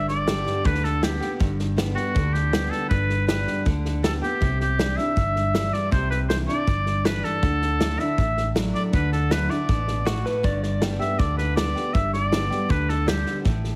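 A straight, brisk four-beat groove from a natural, up-front country drum kit with a tight kick and medium-tuned snare drives this sunny, nostalgic honky-tonk passage, cut from a longer piece. A dark, round, foam-muted electric bass and a picked steel-string acoustic guitar with audible finger squeak carry the G, Cadd9, Dadd9 progression. A clear, classical-style oboe with light vibrato and a soft attack sings the melody, while a clean pedal steel guitar adds a brief slide line with volume swells between 10.1 and 10.8 seconds, all under light reverb and a heavily compressed, radio-like sheen.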